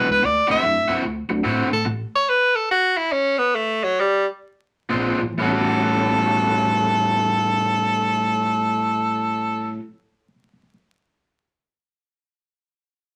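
A moderate small-room ambience and a layer of vinyl crackle frame this gritty, swaggering blues fragment in A mixolydian, cut from a longer piece and set in 4/4 with a swung eighth-note feel somewhere between 118 and 148 BPM. An edgy, forceful tenor saxophone leads up front in a jazz style, its punchy line marked by vibrato and scooped notes, until it stops at 4.3 seconds. Beneath it, an overdriven semi-hollow guitar picks a bright riff, a woody pizzicato upright bass sits in the background, and a mellow, reedy electric piano shimmers with fast tremolo through its built-in speakers. The tempo slows between 1.9 and 5.4 seconds, across a brief break with the chords dropping out, before a Bb9 leads into an A13. At 5.4 seconds a close-miked harmonica takes over as the solo voice, its sound bright and overdriven, with light vibrato, tongue slaps and scooped notes, while guitar, bass and piano, back in just before its entry, play beneath it.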